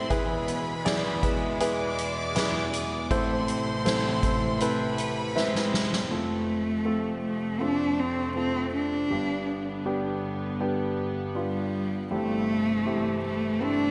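A melancholic, longing pop ballad in A harmonic minor at 80 BPM, cut from a longer piece, opens with an up-front grand piano, a rich, floating string section holding soft-attack chords, a close, intimate chamber violin section playing sul tasto as a second line, and a bright, twangy twelve-string electric guitar picking chorused, tape-echoed arpeggios in the background. A soft-mallet drum kit with a fat snare and boomy kick sits up front and closes with a fill at 5.4 s, when a warm, expressive solo cello enters with vibrato and portamento to carry the melody over chords moving from F to G and C6/G. A lush hall reverb gives the whole a big arena sound, with slapback echo on the piano, violins and guitar.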